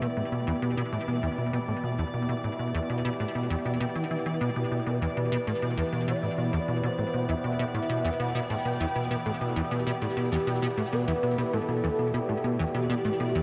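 A straight 4/4 pulse at 99 BPM anchors this mysterious, cosmic ambient excerpt in E minor, tuned to A4 = 435 Hz, where a punchy, funky analog bass riff sits up front with chorus and delay, under a morphing, detuned wavetable pad that holds a sustained Em7 chord through a phaser. A resonant, bubbling stepped-filter texture with chorus hovers high on a single D5, and at 4.9 s a smooth, dark synth lead enters with an expressive, vibrato-tinged melody, carried by ensemble chorus and delay. The whole mix is bathed in a huge, echoing reverb that suggests a vast space.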